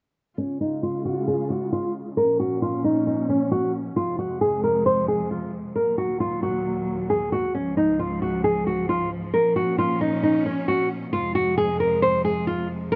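A fingerpicked, classical nylon-string guitar carries the up-front melody through this wistful yet triumphant hip hop fragment at 134 BPM in a half-time feel in Db major, while a lush, bowed symphonic string section with vibrato and soft attack holds close, expressive sustained chords beneath, both parts low-pass filtered under a filter sweep from 0.4 to 13.0 seconds and set in a moderate studio reverb as the harmony cycles through Db, Bbm, Fm and Ebm.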